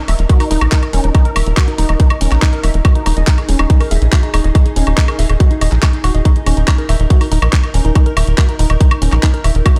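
A dark, close-sounding production frames this alien psychedelic trance excerpt in Eb phrygian, driving along at 141 BPM in a straight 4/4. An up-front electronic kick and a tight, punchy sawtooth-and-square sequencer bass with a moving notch anchor the groove, while a garage kit adds handclaps, bright hi-hats and woodblock under studio reverb. Above them, a woody, wave-folded pluck plays a riff through chorus, 12-bit sampler grit, dub echo and sidechain pumping, and a detuned triangle texture sustains pulsing, tempo-synced chords from 0.0 seconds.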